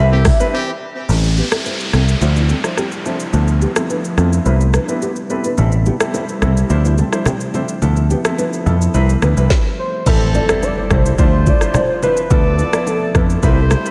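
An overdriven, round picked electric bass sits up front in this hypnotic, smooth afrobeats excerpt at 107 BPM in D dorian, anchoring a produced drum kit with a deep kick, woody snare and sampler grit, a clear concert grand piano, a dark, thumb-plucked nylon-string guitar riff in the background, a moody ambient pad that enters at 1.8 s, quiet bongos and congas that return at 5.6 s, and an electronic downlifter and impact, while a velvety, wave-folded synth lead and a horn section with light vibrato return around 10 s as a brief stop ends, the mix soaked in a dreamy hall reverb.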